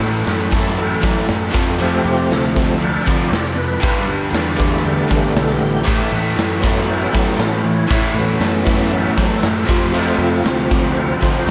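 A big arena sound with lush hall reverb frames this confident, sunny classic rock piece at 118 BPM, where a full, lightly overdriven tonewheel organ solos through a slow rotary speaker and chorus vibrato over a gritty, punchy garage drum kit up front, two double-tracked electric guitars riffing in the background (one crunchy and bright, the other compressed with slapback echo), a round fuzz-driven fingered bass and a jingly tambourine tucked behind, over chords of A5, F, Gadd9 and A6.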